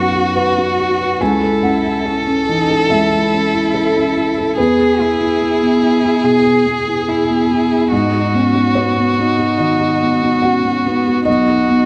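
A focused, vibrato-laden solo violin carries the melody up front in this longing, fragile neoclassical piece for piano and strings, moving at a rubato 72 BPM in G# minor, while a smooth, even bowed cello traces a rich second line beneath it and a dark, felt-muted upright piano, intimate and close with its action noise audible, plays the accompaniment across the 11.9-second span, the chords drifting from B through E and G#m7 back to B inside a wet recital hall reverb.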